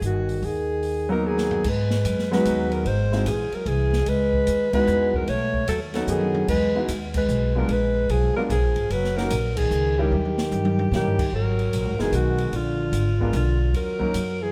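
Moody and swinging, this short cut from a longer small-group jazz piece moves in a brisk 3/4 at 149 BPM in G# minor, with a moderate swing on the eighths. A mellow alto saxophone carries the melody up front with light vibrato and scooped notes, while a dark, close-miked trombone plays a second line beneath it, also with a light vibrato. The pizzicato upright bass with steel strings sounds woody and sits forward, and a warm concert grand piano joins just after the start, adding deep bass and long sustain. The acoustic drum kit, with dark cymbals, a medium-tuned snare and a boomy kick, plays fills around 1.2, 6.1 and 10.1 seconds, and the band hits accents together through the middle stretch. The harmony travels from G#m9 through C#m11, Emaj7 and D#7b9 before returning to G#m9, and the whole group is heard from further back in the room under a moderate plate reverb.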